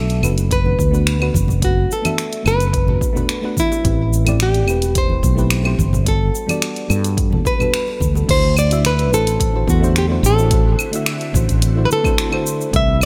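This relaxed sunset chillout piece at 108 BPM in 4/4 opens with a fingerpicked nylon-string guitar carrying the melody up front. Its full-bodied classical tone trails digital delay over a soft, round FM electric piano whose dark, warbling vintage chords pass through chorus and delay. A fretless electric bass sits direct and up front beneath them, warmed by tube saturation. Almost at once a layered deep house kit of claves, hi-hat, shaker, finger snaps and crash cymbal joins with studio reverb, along with bongos and congas in the background, and a punchy electronic kick arrives at 0.5 s. The harmony moves from Bm7 through Am9 and Gmaj9, and the hand percussion drops out at 8.3 s as the music settles onto D9. At 9.7 s an ethereal, airy pad of detuned sawtooth and triangle tones enters in the background, its slow attack and long release coloured by ensemble chorus and phaser.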